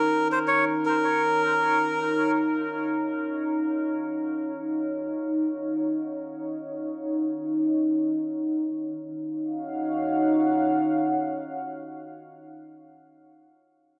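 This meditative, deep ambient fragment, cut from a longer piece, opens in free time in Eb minor with a reedy, breathy melodica line sounding over a dark synth pad holding an Ebm9 chord. The melodica sits up front with a nasal, plastic-cased tone treated with dub echo, and it stops at 2.3 seconds. The pad carries on alone, a moody blend of detuned sawtooth, sine and triangle layers with a sub octave, wave-folding and ring modulation. It has a slow attack and long release, with chorus and its own built-in reverb. The mix is echo-heavy, set in a wet echo chamber with small-room ambience, and the arrangement shifts into a second passage at 8.7 seconds before the pad ends at 12.5 seconds.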